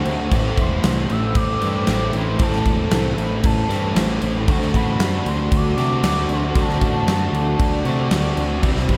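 A dreamy, reverb-soaked mix with a plate-like sheen opens this blissful, hazy shoegaze and dream pop fragment, where a thick fuzz guitar with ensemble chorus and an overdriven semi-hollow guitar trailing reverse reverb both play riffs over a warbling, lo-fi tape-like pad holding nostalgic sustained chords in the background. A growling, punchy picked bass with overdrive and a huge, polished arena drum kit, airy and up front with a punchy kick and crashing cymbals, come in at 0.1 seconds, and the harmony then moves from Am7 to D7. At 0.6 seconds a pure, round sine lead with vibrato, portamento, chorus and tape echo floats a mellow melody high above the roar.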